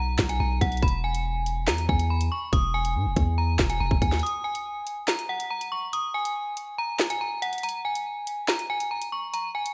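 A ringing, inharmonic FM bell carries the melody in this tense, ominous half-time drill excerpt, its metallic tone shaded by chorus, a low-pass filter and tape echo. Underneath, a deep sine-like 808 bass sustains across a B5 to E change until 4.2 seconds, while an up-front electronic drum kit of hard-clipped kick, sharp snare, handclaps and warm hi-hats enters at 0.2 seconds. From 4.2 seconds the harmony drops away into a break where only the bell and drums continue, all set in a light reverb.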